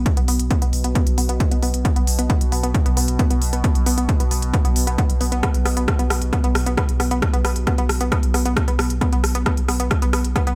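A punchy, up-front electronic kick drives this intense, industrial peak-time techno excerpt at 134 BPM, alongside smooth hi-hats and rim clicks, a deep, thick saturated sub bass with sidechain pumping, a detuned, wave-folded analog pluck riff around B3 with chorus, tube saturation and digital delay under a filter sweep, and a mellow, evolving analog drone with ring modulation, all set in light digital ambience.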